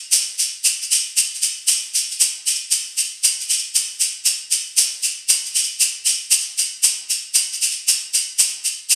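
A grainy, bright tube shaker plays up front from 0.1 seconds in this flowing, reflective fragment of West African traditional music in a straight 12/8 feel, its acoustic sound compressed and saturated, caught on a phone in the room with a moderate studio reverb, and moving into a new section at 2.7 seconds before the clip cuts off at 9.0 seconds.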